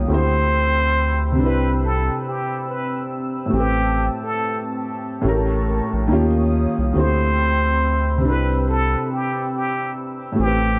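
Heard in a small room with light reverb, this reflective, nostalgic, swung hip hop excerpt sets a soft, felt-muted upright piano and a deep, round analog bass up front beneath a moody, detuned analog pad with chorus, while a trumpet with plunger mute carries a clear, wah-wah melody with light vibrato from 0.1 seconds.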